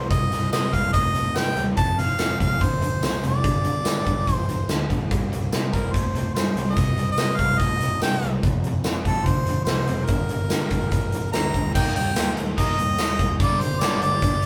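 A live band playing together in one room, with moderate studio reverb, gives this gritty, driving classic rock passage at 144 BPM in C dorian its energy. A clear, close-miked harmonica carries the melody up front with light vibrato and scooped notes. Beneath it sit a big acoustic drum kit with a punchy kick, bright cymbals and tambourine; two overdriven guitars playing riffs, one bright in the background and one sludgy and very quiet; and a fuzzy picked bass. At 11.7 s a piping tonewheel organ through a rotary speaker enters very quietly with sustained chords as the harmony moves to Eb.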